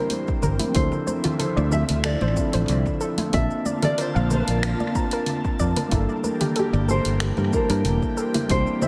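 A punchy, up-front fingered electric bass anchors this wistful, smooth sunset chillout excerpt, where a dark, full-bodied nylon-string guitar carries the melody through dub echo over a mellow, clean tine electric piano, an airy, breathy pad with chorus and phaser, a soft, warbling vintage pluck tucked in the background, a smooth R&B drum kit of finger snaps, shaker and warm hats, close, dry congas, and a deep, overdriven electronic kick, all set in an echo-heavy mix with chamber reverb.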